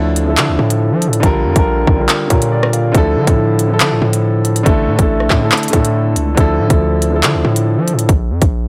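Drill hip hop at 140 BPM in 4/4 with a half-time feel, this ominous, cold passage in D harmonic minor is cut from a longer piece. A dark grand piano carries the accompaniment up front, its mellow, vintage tone and long sustain outlining chords that move from Dmadd9 through Bb6 and Asus4 before closing on Bb5. A hard-hitting 808-style bass sits just as prominently, punchy and heavy with a sine core, a noise layer and a fast attack that decays. A drill drum kit enters at 0.2 seconds with handclaps, crisp hats, rim clicks and a hard-clipped kick, electronic and produced, pushed to the front of the mix. A very quiet, fingerpicked Celtic harp rings out a brief acoustic melody only until 1.1 seconds. The sound is dry, with little reverb, and the whole recording is blown-out and overdriven.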